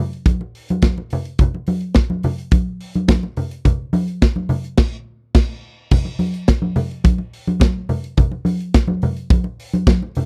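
A straight 4/4 disco groove drives this short, glamorous cut from a longer piece, with an acoustic modern studio drum kit up front (tight kick, medium-tuned snare, hi-hat and crash in a small-room sound) joined at 0.3 seconds by ringing, close, dry congas played with soft hands, both parts sounding together in a dry, close 1970s-style studio recording with little reverb, while a band accent from 4.8 to 5.9 seconds marks the turn into a repeat of the opening section.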